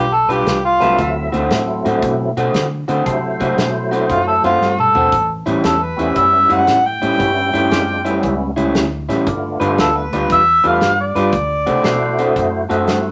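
A swaggering, gritty electric blues shuffle rolls along at 116 BPM in D mixolydian, a short cut from a longer piece set in a moderate club reverb. A mellow, overdriven harmonica carries the melody up front, its scooped notes and light vibrato sounding distant and roomy in a jazz-tinged solo voice. Beneath it, an electric guitar through a small old amp picks a slightly broken-up, lo-fi riff, while a dark, foam-muted fingered bass holds down the low end with a round tone. The natural country drum kit comes in at 0.3 seconds with a tight kick and medium-tuned snare, dropping a fill at 4.6 seconds. At 0.8 seconds a fat, percussive tonewheel organ joins with key click, chorus vibrato and a slow rotary speaker, filling out the changes as they move from G7 to D7, on to A7, and back through G7 to D7.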